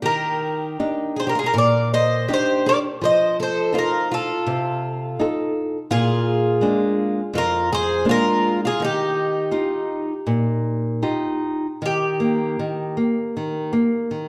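Tender and nostalgic, this fado-style ballad excerpt unfolds with a loose, rubato feel as a metallic, up-front Irish bouzouki carries the double-stringed melody over a bright, boxy, fingerpicked nylon-string guitar accompaniment, while a shimmering, octave-doubled parlour twelve-string adds a quieter picked second line until 11.4 seconds, within a moderate recital-hall reverb and a dark, warm production.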